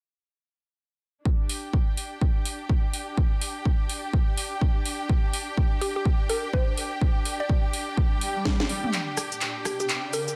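A punchy electronic kick and a rich, bowed studio string section open this bouncy, swaggering bass house cut at 125 BPM in 4/4, with a swung sixteenth-note feel and the strings pumping against the sidechain. A house drum kit joins almost at once, up front and tape-warm, bringing a cracking snare, metallic hats, handclaps, cabasa, rim click and toms. The strings stay even, with light vibrato and a smooth top, forming a lush texture beneath the beat. At 5.8 seconds a woody, round synth pluck takes the melody, its mallet-like FM tone coated in chorus, phaser and digital delay. An electronic swell leads into a drum fill and a build-up with a rising riser, as the kick drops out at 8.6 seconds while the kit and strings carry the lift to the end of this cut from a longer piece.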